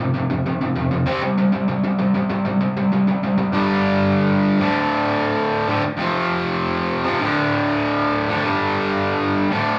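Heard live through a club PA with a moderate room reverb, this rowdy, rebellious punk excerpt charges along at 196 BPM in a straight 4/4. A lone distorted electric guitar, bright, picked, double-tracked and up front with a slapback echo, spans D2 to C4 across all 9.8 seconds. It drives through F5 and C5 before shifting at 3.5 seconds to a new passage built on G5, D5 and F5.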